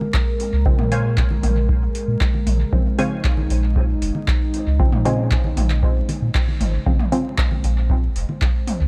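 A cavernous, hazy mix of dub techno opens this short excerpt, set in a digital ambience with vinyl crackle hanging over everything. At 116 BPM in a straight 4/4 around Bb minor, a dark, detuned sawtooth pad holds a sustained Bbm9 chord with slow attack and long release, pumping under sidechain and thickened by chorus. A muted, filter-plucked chord stab carries the lower stabs through phaser and dub echo, its filter sweeping from 6.9 s to the end, while a second, higher stab enters at 0.9 s with a mellow riff bathed in ensemble chorus and echo. The overdriven electronic kick and the clean, smooth sine sub bass sit loudest among the parts, the bass joining at 0.5 s with tube saturation and sidechain pumping. A booming analog drum machine adds metallic hats and handclaps with overdrive and echo, and layered electronic congas and toms, re-recorded in a small room, linger in the background before a band accent lands at 6.3 s.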